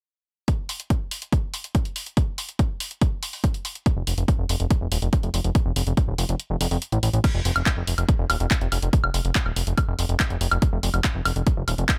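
This intense, alien psychedelic trance piece opens at a straight 142 BPM in 4/4 with a heavy, layered electronic kick and a techno kit of crash cymbal, handclaps, hi-hat and woodblock, both tape-warmed, re-recorded in a small room and placed up front. At 4.0 s a fat, nasal analog bass enters in the low register, blending detuned sawtooth and square waves with saturation, a fast-attack filter pluck and sustained notes. The kick drops out from 6.4 s until 7.2 s, when the track moves into a new section, all in a dry, close sound with little reverb.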